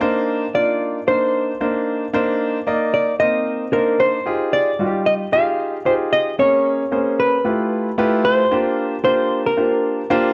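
Slick and danceable, this short funk clip sways with a light sixteenth-note swing. A warm concert grand piano carries the accompaniment from the very start, its deep bass, long sustain and audible action noise giving it an intimate, natural presence up front. At 0.5 seconds a hollow-body jazz guitar enters with the melody, its clean, fingered electric tone dark and close. The harmony moves through rich minor ninth chords before a thirteenth chord leads into a new section at 8.5 seconds, settling on a suspended ninth. An echo chamber reverb and studio ambience surround the pair, and the production leans dark overall.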